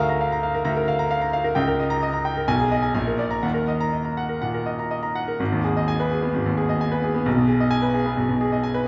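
A brilliant, open-toned grand piano plays alone from the start, spanning G#1 to Bb5 in a stormy, agitated classical virtuoso study at around 126 BPM, with uneven, rubato timing. The harmony churns through Eb minor before shifting to G# minor at 5.4 s, and the piano's short-sustained notes ring out into a heavy scoring-stage reverb. This brief passage is cut from a longer piece and ends at 8.9 s.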